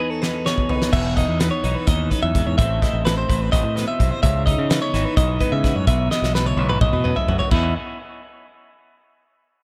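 The music moves in a straight, quick 7/8, opening with a short break as a loose indie drum kit tumbles in with a fill at 0.2 seconds. This is bright, intricate math rock with a midwest emo heart. A twangy, direct-recorded clean guitar spins picked arpeggios up front, while a compressed twelve-string electric guitar fills out the accompaniment beneath it, and both parts are soaked in dub echo. The growling fingered bass arrives at 0.9 seconds with an overdriven bite. The drums sit forward in a pumping studio room, with a fat snare, a punchy kick, dark cymbals, hi-hat and toms, and they throw another fill from 6.1 seconds. The harmony cycles through Emaj7, Amadd9, C#m9 and B7sus4 before settling on Emaj7(no3) as a new section begins, in a dry, echo-heavy mix cut from a longer piece.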